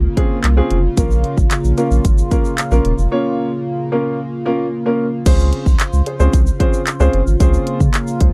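A thick, saturated sub bass pumps against the sidechain from the very start of this summery, euphoric dance-pop cut at 112 BPM in Db major, moving from Dbmaj7 to Bbm. A punchy, layered electronic house kit of kick, handclaps, hi-hat and crash sits up front beside a natural baby grand piano and a shimmering, retro pulse-width pad with dark chorus, both also pumping, while a grainy tube shaker sits in the background from 1.0 s. The dry, close, 1970s-style studio sound carries a break from 3.1 s before a new section lands on Dbmaj7 at 5.3 s.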